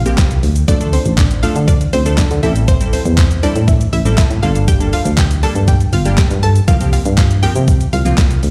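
Energetic and driving, this dance-pop clip at 120 BPM in D minor rides a crisp, overdriven 8-bit drum machine with a thumpy kick, medium-tuned snare, handclaps, hi-hat and shaker, heard up front and re-recorded in a large room, while a punchy, round FM bass also sits up front and pumps against the sidechain. A detuned, wave-folded wavetable chord stab with a filter sweep moves through C7sus4, Dm, Am7 and Gmadd9, and a full-bodied sawtooth analog pluck with a noise layer carries the melody through chorus and dub echo, both also pumping with the sidechain. The whole clip sits in a big, bare-room reverb, as if played on a large sound system.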